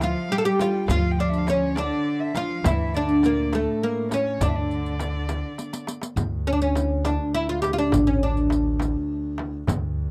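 A dry, close 1970s-style studio sound frames this soulful, melancholic Arabic maqam ensemble clip in 6/8, where a woody, up-front fretless oud carries the melody over thumpy pizzicato upright bass, crisp metal-shell darbuka, a deep frame drum and riq jingles, while a dark sul tasto violin and an earthy chamber cello section bow second lines until 5.9 seconds, and after a drum fill a biting bowed double bass drone enters in the background from 6.2 seconds.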